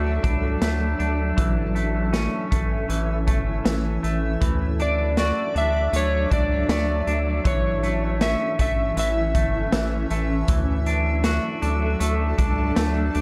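Dream pop at 79 BPM in D major, this excerpt from a longer piece drifts in an ethereal, dreamy mood as the harmony rocks between Dadd9 and A. A shimmering ambient pad with an octave-up shimmer and granular texture holds sustained chords through chorus and its own reverb, while a clean, twangy electric guitar picks bright arpeggios bathed in lush chorus and delay. Underneath, a round analog bass sits deep, dark and up front, and a raw garage drum kit enters at 0.2 seconds with a punchy kick, a medium-tuned snare and hi-hat, its gritty, saturated sound pumping in a small room with a rolled-off top. From 4.8 to 9.7 seconds an electric slide guitar carries a slightly broken-up, shadowy melody high in its range, trailed by delay. Light reverb ties the mix together, keeping the bass and drums forward against the hazy upper layers.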